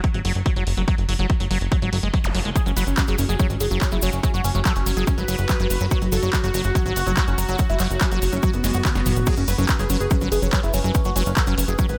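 Psychedelic trance at 143 BPM in a straight 4/4, alien and intense in mood, in a short excerpt cut from a longer piece. An overdriven electronic kick sits heavy and up front alongside a layered techno kit of punchy snare, handclaps, hi-hat, toms and crash cymbal, while a funky, plucky analog bass with a filter pluck and fast attack rumbles low around F#1 to G#1. Above it, a squelchy, resonant liquid acid bass riff runs through filter sweeps, treated with chorus, tape echo, cassette tape colour and sidechain pumping. A brief electronic zap flickers in the background near 2.2 seconds, and soon after a thick, nasal unison lead with vibrato enters at 2.6 seconds alongside a grainy, close cabasa, followed by a pulsing, tempo-synced gated texture of bright, detuned sustained chords with chorus and reverb. A drum fill leads into the drop at 9.3 seconds, all within light reverb.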